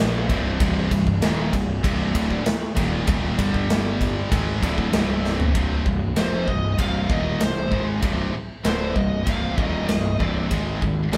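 A live band fills a moderate stone room in this short heavy metal cut, taken from a longer piece, with the players sharing the space and a reverb that lends it an epic weight. At 97 BPM in straight 4/4 and C minor, two bright, high-gain distorted guitars churn out riffs from the start, sitting in the background. A growly fuzz bass, picked and overdriven, digs in beneath them, while a big acoustic rock kit arrives at 0.3 seconds up front, with a punchy kick, a medium-tuned snare, toms and a bright ride cymbal. A drum fill just before 5.5 seconds opens the second section. At 6.2 seconds a dark, high-gain lead guitar enters with a melody, keeping the relentless drive over chords that move from C minor through G5 and back, landing on Ab5 near the end.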